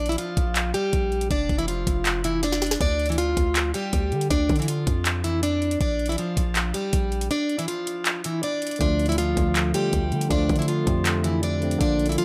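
Echo-heavy and lightly reverberant, this dark, eerie half-time trap excerpt puts a boxy, picked steel-string acoustic guitar melody with finger squeak and tape echo up front over a deep, boomy 808 bass and a knocking, sharp-snared trap kit with metallic hats and handclaps, which drops its kick from 7.3 to 8.8 seconds, after which a worn, slightly out-of-tune, lightly overdriven tine electric piano enters.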